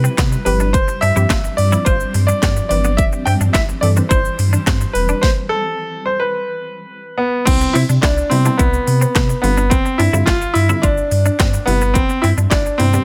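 A clear concert grand piano carries the melody with a digital delay over punchy house drums, a deep sub bass with octave that pumps with sidechain, a hollow, bouncy square pluck and a twangy direct-recorded clean guitar riff in the background, and a shimmering pad that drops out at 5.2 seconds, leaving a stop before the groove returns at 7.5 seconds in this upbeat, summery dance-pop cut in C major at 107 BPM.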